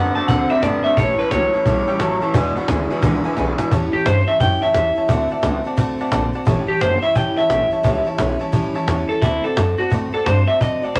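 Rollicking and rowdy, this swung rockabilly excerpt in A mixolydian moves at 174 BPM, with a twangy, slightly broken-up electric guitar up front carrying the melody and opening with a clean solo, while a second lo-fi electric guitar plays a riff until 3.7 s. A full-bodied jumbo acoustic guitar with fresh strings and finger squeak, a jangly, metallic tack piano that drops in a honky-tonk fill at 5.8 s, a woody, thumpy pizzicato upright bass on gut strings, and a snappy, close cajon with snares fill out the accompaniment, with the cajon adding a fill just before the second section. Moderate studio reverb gives the whole band a sense of space.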